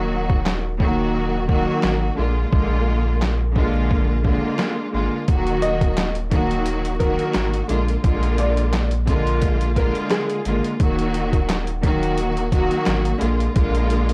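A lush, bowed string section opens this dark, moody boom-bap hip-hop passage, carrying a cassette-tape tint and filtered top and bottom, over a deep sine-and-triangle sub bass doubled at the octave and thickened with tube saturation. At 0.3 seconds a gritty, sampler-style drum kit joins with a thumpy kick, a medium-tuned snare, hi-hat and handclaps. The kit sounds compressed, pitched down and re-recorded in a small room, and it sits on a lightly swung groove. The harmony rocks between a minor chord and a dominant seventh throughout. From 5.6 to 10.4 seconds a woody, slightly detuned upright piano adds a filtered melody above the strings. The whole piece is dry, with a rough hardware character and vinyl crackle, and it is cut from a longer piece.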